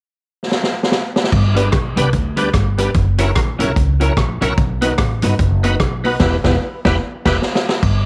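Upbeat and cheerful, this short excerpt of swung ska at 148 BPM in G major opens with a punchy vintage drum kit fill at 0.5 seconds before a woody pizzicato upright bass enters at 1.3 seconds, joined at 1.6 seconds by a shouting, lightly overdriven tonewheel organ with key click, chorus vibrato and slow rotary speaker playing stabs, plus a dark, clean semi-hollow guitar in the background with warbly pitch drift and tape echo, moving through G, F#7, B and Em to a band accent and final drum fill in a small room.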